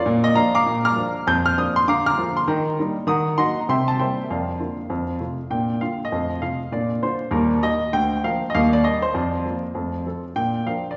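A dark, mellow baby grand piano plays solo stride jazz from the first moment, swinging and exuberant, its intimate, up-front tone carrying audible action noise and short sustain within the wet reverb of a recital hall, with vinyl crackle beneath this 11-second fragment cut from a longer piece.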